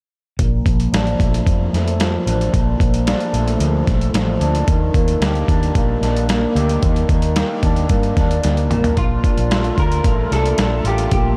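A gritty, overdriven soul-sampler drum kit sits up front with a thumpy kick and a medium-tuned snare, driving this nostalgic, laid-back bedroom-pop passage at 112 BPM in Bb major. A twangy, slightly broken-up guitar comps through lush chorus, warbly pitch drift and a filter sweep over Bbmaj7 and Ebmaj7, while a dark, round, foam-muted bass holds the low end. After a drum fill, a compressed, picked second guitar enters at 9.0 seconds with a short melody through chorus and delay, all of it bathed in a huge, dreamy reverb.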